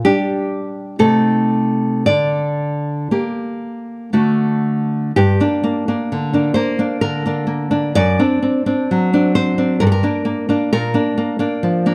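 A nylon-string guitar carries this romantic piece for solo classical guitar, fingerpicked and placed up front with a warm, acoustic tone across its full 11.9 seconds. The mood is passionate yet intimate, moving in 3/4 at a rubato pace that drifts between 53 and 66 BPM in G minor. The harmony opens on G5, passes through Adim/C and Gm/D, and settles on D before a second section begins at 5.1 seconds with Gm, moving on through D7/F# and back to Gm before closing on Bb. The guitar ranges from F#2 up to D5, giving the writing a full register from low bass notes to upper lines. Close, detailed microphones capture the instrument with light reverb, and the passage is cut from a longer piece.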